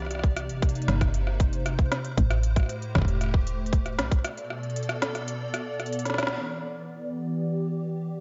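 A hollow, flute-like pad with ensemble chorus and vintage 12-bit grit opens this melancholic, intricate IDM fragment, sustaining chords from Cm7 through Am7 and Bm7 over a round FM bass with tube saturation and an overdriven electronic kit of woody snare, crisp hats and rim clicks, with a tight, up-front kick arriving just after. At 4.2 seconds the bass and kick drop out for a break carried by the kit and pad, until a band accent at 6.3 seconds, when the pad continues alone on Em7 under a filter sweep. The dark, warm production sits in a moderate echo-chamber reverb, with the pad placed up front.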